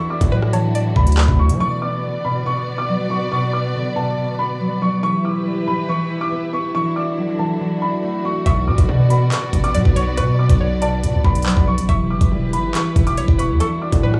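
A half-time drill groove of knocking kick, crisp hats, handclaps and rim clicks drops out after 1.6 seconds and returns at 8.5 seconds alongside a heavy, saturated 808-style bass, framing a dark, menacing hip hop excerpt in which a mellow, boxy grand piano carries the high melody over up-front, fingerpicked concert harp and a distant, lush, bowed string section with vibrato, while a bright, twangy resonator pluck with chorus and digital delay adds a second line in a small room ambience.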